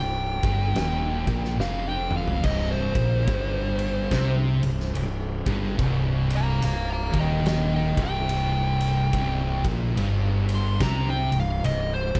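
Stoner and doom metal in a sludgy, hypnotic swing, cut from a longer piece, where a compressed fuzz lead guitar with tape echo solos high above a bright, double-tracked high-gain guitar riff and two thick fuzz guitars sitting quietly in the background, all resting on a growly, punchy, overdriven fingered bass up front, while an oversized low-tuned acoustic drum kit with a boomy kick, fat snare and gritty pumping room sound enters at 0.4 seconds and throws in a fill from 1.6 to 2.4 seconds, the whole mix dark and warm in a small room.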